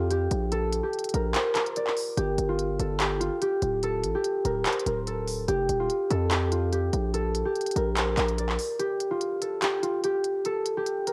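A half-time trap groove of crisp hi-hats and handclaps drives this brooding, hard-hitting hip hop excerpt, where a mellow, ringing concert harp carries the melody through cassette-tape grit over a saturated, distorted 808-style bass that drops out at 8.6 seconds, leaving a break as the kick falls silent from 8.8 seconds.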